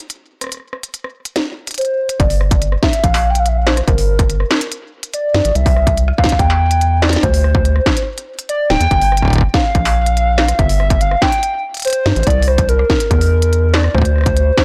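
A straight 4/4 pulse at 143 BPM opens this intricate, glitchy IDM excerpt in G dorian, with an industrial drum kit of crisp hi-hats, rim clicks, a clanging snare and struck metal, all colored by tape echo. At 1.8 seconds a warbling, nostalgic lead enters between Bb4 and G5, its detuned square and sawtooth tones carrying vibrato, chorus, digital delay and the grit of a vintage 12-bit sampler. From 2.2 seconds a rubbery, hollow square bass bounces between D1 and G2 with a filter pluck, a fast attack and tube saturation, joined by a distorted electronic kick that sits up front. The harmony moves from Gm through C and D7(no3) to Gm7, C7 and a closing Csus2/D. The whole mix is blown-out and overdriven, with a light reverb around it.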